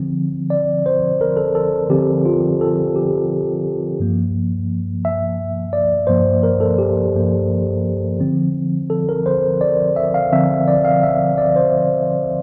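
A moderate large-studio reverb with a one-second tail surrounds this late-night R&B excerpt, which has the live feel of players sharing a single room. A tine electric piano plays alone throughout, its tone mellow, clean and up front, with a direct, intimate presence. The pulse is a slow, sultry 6/8 at 57 beats per minute, counted in dotted quarters with a straight feel. The piano spans from G2 up to F5 as the harmony moves from Dm7 to Gm7 at 4.0 seconds and back to Dm7 at 8.2 seconds. The overall effect is warm and unhurried, a brief, seductive passage lifted from a longer piece.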